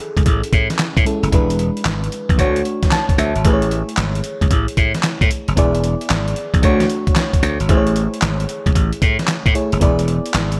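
Bright 1980s-style digital production with light reverb frames this flirty, upbeat new jack swing excerpt, where a gritty, compressed sampler-style drum kit with a thumpy kick, fat snare, handclaps and hi-hat sits up front beside a growly, punchy slap bass over swung sixteenths, while a warbling, mellow vintage FM electric piano cycles through Amaj7, E7 and Dmaj7 and adds a brief fill at 2.6 seconds.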